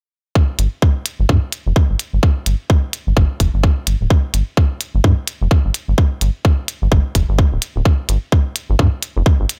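Cool and clinical, this fragment of minimal techno rides a swung sixteenth-note feel in 4/4. A tight electronic kick opens at 0.4 s, and at 0.6 s clicky hi-hats and a rubbery, nasal square-wave bass join it. The kick and hats sit up front with the air of a large room. The bass spans D1 to G2 with a dark, hollow, resonant filter pluck and a moving notch, and it is colored by tube saturation and shaped by sidechain pumping. The overall mix stays dry, with little reverb.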